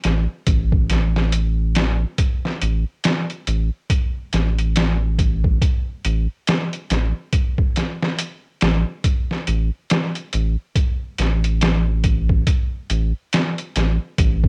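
A slow 70 BPM trip hop groove in 4/4 carries this 14.5-second cut from a longer work, its sixteenths swung at 59%, setting a hypnotic, brooding mood. The sampler-style drum kit of kick, snare and hi-hat sits up front, pitched down, compressed and gritty, with a thumpy kick and a medium-tuned snare, and its overdrive, studio reverb and cassette tape character roughen it further. A round analog bass joins at 0.1 seconds, deep and dark, blending square and sine tones with a fast attack and sustained notes around A1, its tube saturation adding heft. Both parts hold the foreground for the full length of the single section. The whole has the light reverb and hazy intimacy of a home recording on cassette, tuned slightly sharp at A4 = 441 Hz.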